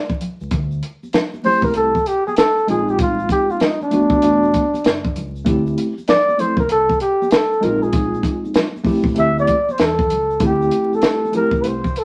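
A moderate studio reverb and a layer of vinyl crackle frame this smoky, nocturnal jazz-hop excerpt, cut from a longer piece and set in D minor at 97 BPM with a 16th-note swing. A breathy, dark flugelhorn sits up front from the first moment, carrying a jazz-style solo between 0.5 and 10.4 seconds with light vibrato and scooped notes across a range from D4 to E5. Beneath it, a compact cocktail drum kit with a punchy kick, a high-tuned snare, hi-hat and a rolled-off top keeps the groove, while tube shaker and congas murmur in the background. A deep dub fingered electric bass, round and amped, enters at 0.4 seconds, and a worn, slightly out-of-tune tine electric piano joins at 1.4 seconds with mellow voicings. The harmony moves through D9sus4, Bb9sus4 and E9sus4 before settling back on D9sus4 shortly before a brief closing section begins at 10.4 seconds.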